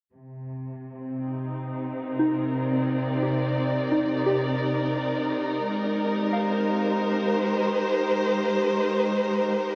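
Bathed in the reverb of a wet recital hall, this hazy, deep ambient passage, cut from a longer piece, sets a dark, bowed chamber string section up front holding expressive, vibrato-laden sustained chords over Cm7 and Abmaj7, while from 2.2 seconds a soft, pure FM synth bell drifts in the background with gentle, decaying arpeggios coloured by chorus, phaser and dub echo, both parts shaped by low-pass filter sweeps.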